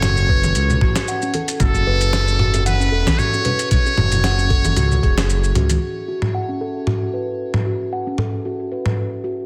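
Meditative organic downtempo at 114 BPM in F# minor with a gently swung 16th-note feel: a buzzy, brilliant muted trumpet carries an up-front melody with light vibrato and delay until 5.5 seconds, while a round, ringing steel tongue drum, struck with soft mallets and roughened by 12-bit sampler grit, low-pass filtering and digital delay, plays arpeggios that take a filter sweep from 5.8 seconds. Beneath them a smooth, detuned sawtooth-and-triangle synth bass glides with portamento and sidechain pumping, a thumpy electronic kick and a dusty, tape-warm sampler-style kit of hi-hat, shaker, fat snare and toms set the groove, and soft-handed congas and bongos sit in the background, all in a dense, heavily limited mix with light reverb, in this section cut from a longer piece.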